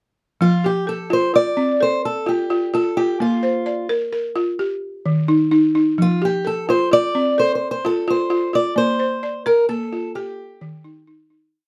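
West African traditional string and xylophone music in 12/8, moving at 86 BPM in F mixolydian with a flowing, hypnotic mood, as a balafon struck with rubber mallets lays down a woody, buzzing interlocking ostinato of arpeggios beside a fingerpicked archtop guitar carrying a motif-based melody of call phrases. The guitar sounds boxy, with fresh strings and audible finger squeak, and both parts sit up front under close, detailed microphones and light reverb. The chords circle through F, Bb and Eb before the piece fades out from 8.8 seconds, with the guitar ending at 11.0 seconds and the balafon at 11.7 seconds.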